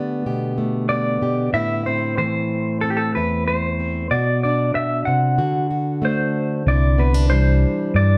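A dark production with moderate studio reverb frames this hopeful indie folk excerpt, where a twangy, slightly broken-up electric guitar through a small old amp carries the tremolo-tinged melody over a full-bodied, fingerpicked plugged-in steel-string acoustic guitar, and a round, amped picked electric bass joins up front at 6.7 s as the arrangement begins to build.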